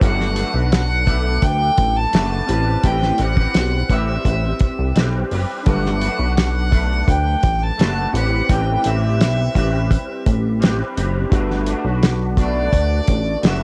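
A straight 4/4 pulse at 85 BPM from a dry, up-front 70s drum kit with a fat snare and tight kick anchors this nostalgic, hazy indie and bedroom pop fragment in G major, where a glossy, chorused synth bass sits forward, a twangy, slightly broken-up electric guitar through a small old amp and warbling lo-fi synth keys in the background move between Gmaj9 and Am9 chords, and a single distant violin played sul tasto floats a pure, soft-bowed melody on top through lush chorus, analog delay and cassette tape, all within a small booth-like room.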